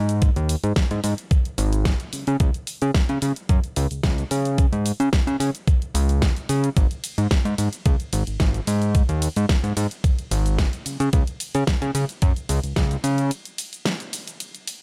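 A fat, detuned analog bass anchors this groovy, cosmic nu-disco excerpt at 110 BPM, its sawtooth and square-wave tone saturated through tube warmth, plucked by a filter with a fast attack and pumped by sidechain until it stops at 13.3 seconds. An up-front, thumpy electronic kick with overdrive drives the straight 4/4 beneath a layered, produced pop drum kit of hi-hat, ride cymbal, shaker and a fat snare. The mix is dry, with little reverb, and a brief break begins at 13.3 seconds as the kit carries on to the end at 14.8 seconds.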